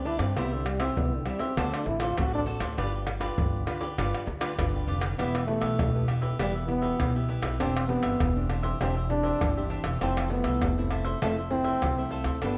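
Playful and lively, this short cut from a longer samba and choro piece sits in a straight four-four groove. A mellow, close-miked trombone carries the melody in a jazz style with vibrato, taking a featured solo through the opening 5.2 seconds over a C, D7 and G7 progression. A crisp, picked cavaquinho and a bright, fingerpicked classical nylon-string guitar fill in the accompaniment, while a woody, thumpy pizzicato upright bass with steel strings anchors the low end. From 0.1 seconds, tube shaker, a tight surdo, pandeiro and tamborim sit up front with a vintage, band-limited acoustic character. After 5.2 seconds the harmony moves through Em, Cadd9/E and Fmaj7, all set in a moderate large-studio reverb within a dark, warm production.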